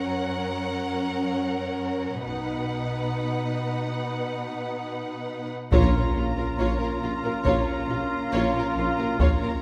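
A straight 4/4 pulse at 69 BPM carries this heroic, relentless stretch of epic orchestral film score in Bb phrygian. It opens with an expressive, lush violin melody over a soft-attack second violin line, dark viola accompaniment with portamento, and smooth, even cellos on the bass, and bowed double basses join at 2.3 s as the build-up gathers. At 5.7 s a band accent lands as heavy-stick taiko drums, sustained French horn chords, clear trumpet stabs and a distant, mellow tuba arrive, the taiko close and dry while the whole sits in a reverberant concert hall.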